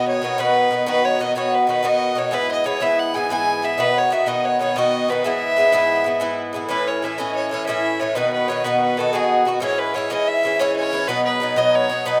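A clear, earthy fiddle carries the melody of this lively, rollicking Celtic slip jig from the opening moment, with a bright, metallic Irish bouzouki picked on double strings up front beneath it and a mellow, airy wooden baroque flute playing a very quiet, tongued second line with vibrato. At 123 BPM in 9/8 with a straight feel, this cut from a longer piece moves through chords such as B, E and C#m across two passes of the same section, the second starting at 6.7 seconds. A moderate plate reverb surrounds the rough home demo mix.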